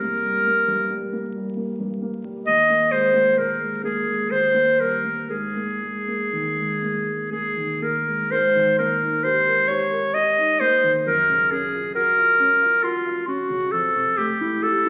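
Dreamy and pastoral, this impressionist classical excerpt for clarinet and grand piano drifts in a rubato 3/4 at roughly 57-69 BPM in Ab major, its harmony wandering through suspended and colourful chords such as Gbmaj7 and Fmaj9. A bright, present clarinet carries the melody up front throughout, while a dark, mellow concert grand lends deep bass and short-sustained accompaniment beneath, the music passing into a second section at 8.3 seconds. A wet recital-hall reverb surrounds the duo, and the sound has the aged quality of a very old 78 rpm record with vinyl crackle.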